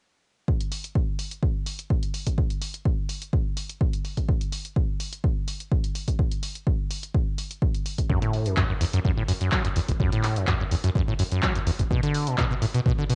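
The sound is raw and homemade, with a cassette-recorded dullness that rolls off the top end and a light digital reverb that adds only a touch of ambience. This is a driving acid house cut in straight 4/4, taken from a longer piece. A dry, punchy analog kick drum sits up front from 0.5 seconds, joined almost at once by a drum machine supplying handclaps and hi-hat, both parts carrying the smeared grain of cassette tape. At 8.1 seconds a sawtooth acid bass riff enters, squelchy and resonant, each note a fast-attack filter pluck that then decays. Pushed through tube saturation and placed up front alongside the kick, the bass gives the groove a gritty, insistent edge.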